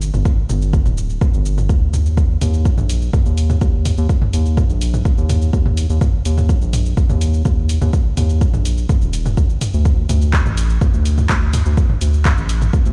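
Hypnotic and dramatic, this melodic techno fragment, cut from a longer piece, runs at 125 BPM in a straight 4/4 and is tuned to A4 = 444 Hz. A round, dark analog bass sits up front from the first moment, moving between D1 and Eb2. Its sustained, fast-attack tone blends square, sine, triangle and sawtooth waves with a wave-folded edge, and it pumps under sidechain compression. A layered electronic kick drum enters at 0.3 seconds, deep and tape-warm, and stays prominent until 12.8 seconds. Underneath, a punchy, dry analog drum machine supplies handclaps, hi-hat, shaker and toms. The mix carries little reverb, yet it sounds as if it is played on a big sound system in a bare stone room.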